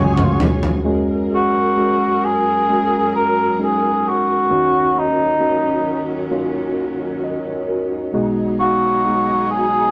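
Heartfelt and hopeful, this pop ballad fragment opens with a brief tom fill from 0.2 to 0.8 seconds, the acoustic drums sitting up front with a mid-forward tone. A very quiet picked steel-string acoustic guitar adds full-bodied jumbo arpeggios only until 0.9 seconds, when the main passage begins. The dark cor anglais carries the melody in a classical solo style with light vibrato, placed up front yet sounding distant and roomy. Beneath it, a worn, slightly out-of-tune tine electric piano gives clean, direct accompaniment, while a distant bowed string section holds soft-attack sustained chords with expressive vibrato and portamento. Moderate reverb and a rough rehearsal-room sound with tube saturation lend the recording a lived-in grit.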